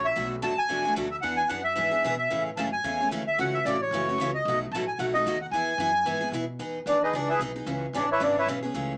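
A brisk swing at 224 BPM in 4/4 drives this playful acoustic string-swing clip, cut from a longer piece, with a growly, woody pizzicato upright bass holding the low end beneath a bright, full-bodied picked steel-string guitar whose up-front accompaniment carries audible finger squeak through Bm7, E7, Amaj7 and F#m7 changes. A reedy, airy accordion with slow beating sits up front on the melody and takes a solo from 6.6 s as the harmony moves to Emaj7 and C#m7. The sound is that of a small room with moderate reverb, heard through a small speaker.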